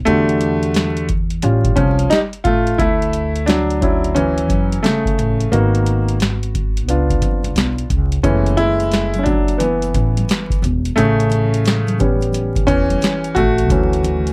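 A woody, up-front upright piano solos from the start over a growly pizzicato upright bass and a booming analog drum machine with deep kick, crisp snare and metallic hats, setting a mellow, nocturnal jazz-hop groove at 88 BPM in 4/4 with a swung sixteenth feel. The piano moves through lush chords such as Em11, A7alt, Dmaj9 and C#7b9, and at 8.2 seconds a very quiet, band-limited tube shaker and congas played with soft hands join in. The dark production keeps reverb to a minimum and carries a layer of vinyl crackle, in this fragment cut from a longer piece.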